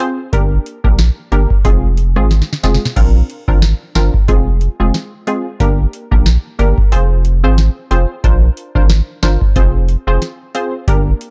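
The booming analog drum machine and a crisp, detuned wavetable chord stab with sidechain pumping open this hypnotic, sultry dancehall excerpt at 91 BPM, swung on the sixteenths in F dorian. The machine's deep kick, crisp snare, metallic hats and rim click sit dry and up front, and a round, nasal analog bass joins at 0.3 s beneath chords moving through Gm, Fm and Bbadd9. A drum fill at 2.3 s leads into the second section at 3.0 s, all within a dark production with little reverb.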